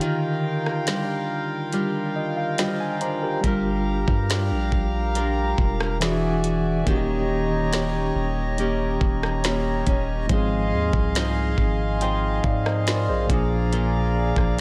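This contemporary R&B excerpt is romantic and dreamy, moving at an unhurried 70 BPM in 4/4 with a straight feel in Eb major. A clean tine electric piano, heard through its built-in speakers, carries the accompaniment alongside a reedy, breathing pedal harmonium that holds mellow sustained chords. A full-bodied, fingerpicked nylon-string guitar adds arpeggios with a digital delay, while an electronic drum kit sits up front with a knocking kick, woody snare, metallic hats and rim clicks, re-recorded in a small room. The opening is a break in which the electric piano plays a fill from 1.7 seconds, and at 3.4 seconds a deep, sine-like 808-style bass enters with long, decaying notes. The harmony drifts from Ebmaj9 through Gm7, E9, Eb7 and Ab6 to Bb7, all set in a digital ambience.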